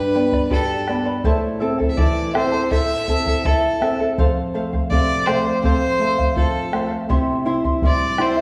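A single bowed fiddle, clear and earthy with a light vibrato, opens this Andean folk piece at once, sitting up front and carrying the melody between A4 and E5. It is joined from the start by a fingerpicked charango, whose double strings, some of them octave-doubled, give a shimmering accompaniment, and by a small, fingerpicked nylon-string guitar holding the lower register. At 0.3 seconds a round bombo enters, close and dry, marking an unhurried 82 BPM in a straight 4/4. In A minor, the harmony moves from G to Am, then F and C, a progression that gives the music a mood at once festive and melancholic. A wet recital hall reverb lends the ensemble a sense of space in this short cut from a longer piece.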